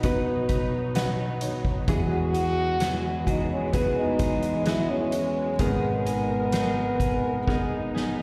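From the first moment, a present, up-front French horn sings the melody of this emotional, hopeful pop ballad at 65 BPM, joined by a dark concert grand piano with audible action noise and deep bass that adds a fill at 0.5 seconds, a lush, woody bowed string section in the background, a clean, compressed electric guitar picking arpeggios through analog chorus, and a soft-mallet drum kit with a fat snare and boomy kick that plays a fill at 7.5 seconds, all heard as a live gig through the venue's PA in recital-hall reverb while the chords move from B to Eadd9 to G#madd9.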